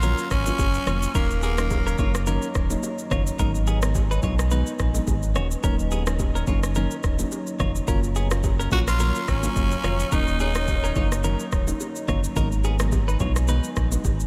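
A lightly swung 16th-note groove in 4/4 at 107 BPM drives this smooth, mellow afrobeats piece in Eb minor, where an up-front electronic drum kit with a deep kick, rim click and shaker sits over a full, sine-toned sub bass with octave, while a soft round pluck with chorus, a bright, twangy clean electric guitar riff with tape echo, a moody detuned ambient pad in the background and very quiet vintage congas and bongos fill out the dreamy mix soaked in cathedral reverb, and a raspy, gritty close-miked tenor saxophone with vibrato and tape echo carries the melody in the opening seconds and again from 8.7 to 11.2 seconds.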